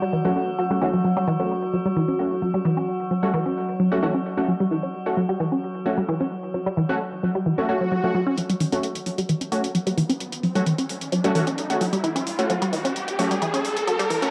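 A squelchy, detuned blip pluck opens this driving peak-time techno excerpt at 131 BPM, its riff sitting up front with chorus, phaser and tape echo. Beneath it hangs an eerie, inharmonic FM drone with a slow attack and long release, set in F# phrygian over an F# minor chord. Aggressive, thick rave stabs built from detuned sawtooth unison and ring modulation join almost at once, with a filter sweep running through the opening stretch and tape echo and built-in reverb trailing them. A swell arrives at 7.6 seconds. At 8.4 seconds the drone stops, and layered, metallic electronic hi-hats enter low in the mix under a low-pass filter, as a riser and build-up push through to the end and a filter sweep moves over the arpeggio sound. A moderate spring reverb and the high-passed, lo-fi character of a home cassette recording give the industrial, relentless mood a gritty room.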